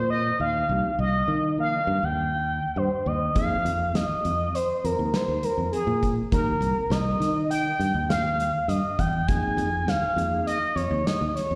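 Heard live through a venue's PA with lush hall reverb, this intricate, driving progressive instrumental excerpt in 5/4 puts a smooth, expressive sawtooth synth lead with chorus, vibrato and slapback echo up front over a round, punchy fingered electric bass, while a soft, flute-like tonewheel organ with slow rotary speaker sits in the background and a loose, dark indie drum kit with a medium-tuned snare enters at 3.4 s, the harmony moving from Eb through F7(no3) to Fm7.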